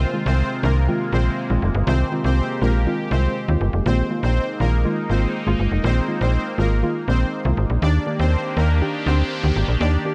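A snappy, metallic slap-like FM bass sits up front in this bittersweet, energetic pop excerpt at 121 BPM, beneath a dark, round chorused pluck, an airy, evolving chorused pad, and a smooth detuned supersaw melody entering at 0.3 seconds, moving through Ab6, Bb7sus4 and Ebmaj7 with a dry, gritty cassette-tape sound.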